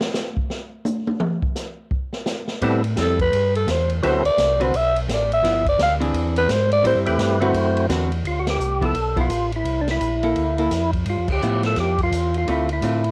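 Soul jazz organ trio, greasy and swinging at 170 BPM in G mixolydian, heard in a short excerpt cut from a longer piece with the grainy character of a home cassette recording in a small room. A big-band style drum kit opens alone with a solo until 2.6 seconds, its punchy kick and medium-tuned snare joined by hi-hat, ride, crash and toms. The band then enters on Am7, with a mellow, round organ holding down the bass through a slow rotary speaker, key click audible, and a dark, compressed hollow-body archtop guitar comping underneath. A growling alto saxophone takes the lead, close-miked, breathy and raspy with light vibrato, while a fat, lightly overdriven percussive organ adds melody lines through its own slow rotary speaker. In the later section over G13, C13 and Dm7 changes, that organ carries the melody to the end, with band accents at 8.4 and 11.2 seconds punctuating the swing.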